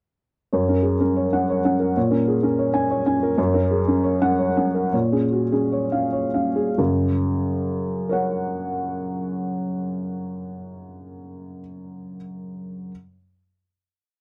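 In a rubato 3/4 that drifts between 90 and 128 BPM, this peaceful, tender neoclassical minimalist piano piece in F# major features a lone felt-muted upright piano, soft, boxy and intimate, playing rocking broken chords with a second figure alongside as F# and A#m7 alternate, slowing from 2.7 to 6.8 seconds before settling on a final F# chord, all captured in a dry, close 1970s-style studio sound.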